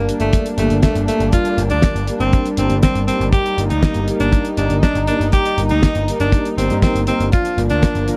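This dry, close recording has the intimate feel of a 1970s studio, with little reverb around a short italo disco passage in G minor at 120 BPM, bittersweet and nostalgic in mood. A bright alto saxophone carries the melody up front with light vibrato and a tape echo, while a dark studio string section holds soft, bowed sustained chords beneath it. Analog synth brass, fat and detuned with a sawtooth edge and chorus, adds mellow stabs in the background, and a filter sweep on the analog polysynth runs through the whole passage. An overdriven picked electric bass, round and punchy with tube saturation, sits prominently under the harmony. A damped 70s drum kit brings a fat snare and hi-hat with small room ambience, and the tight, dark kick drum is pushed up front. The harmony rests on G minor before moving to Bb/G at 7.3 seconds.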